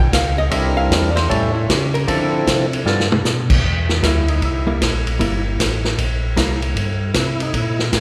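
A long, church-like reverb hangs over this short soul jazz organ trio excerpt, giving its bluesy, soulful swing a spacious, resonant glow. A mellow, round tonewheel organ carries the bass line through a slow rotary speaker, its clean tone touched with vibrato and key click. The dark, picked and compressed hollow-body electric guitar takes a solo through the opening 3.6 seconds and falls away at 6.6 seconds. A second tonewheel organ, full and percussive with a second-harmonic attack, states the melody in two phrases, also turning through a slow rotary cabinet. The vintage acoustic kit sits up front with a punchy kick, a medium-tuned snare, dark cymbals and a warm, rolled-off top, and a brief drum fill leads into the second section.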